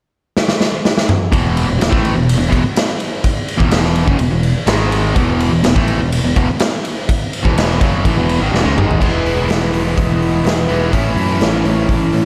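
A big arena-sounding classic rock excerpt in E major at 125 BPM, driving and confident, opens with a gritty, saturated garage drum kit fill before a double-tracked overdriven electric guitar riff and a growly, punchy picked bass enter at 1.3 seconds, moving through E5, G#5 and E chords, with another drum fill leading into a shimmering, octave-doubled twelve-string acoustic guitar with slapback echo in the background from 9.0 seconds as the harmony shifts to A.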